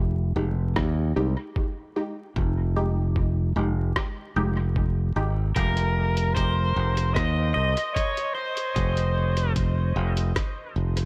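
An up-front, growly fingered electric bass anchors this short ambient dub cut, a deep and hazy piece at 75 BPM in F minor, running from the first second to the end under a light reverb and a layer of vinyl crackle. Muted, detuned chord stabs with a filter pluck and fast attack drift through a phaser and dub echo over Fm9 until 5.3 seconds, before the harmony moves to Cm/F. A compressed, pitched-down electronic kick gives a muffled thump, while a lo-fi sampler-style kit adds tape-warm hi-hat and rim click, both sitting in studio reverb. At 5.6 seconds a bright, overdriven slide guitar steps forward with a fingerpicked melody soaked in dub echo. From 7.5 seconds a clean pedal steel, played with fingerpicks and volume swells, adds soft arpeggios on a high Eb behind it.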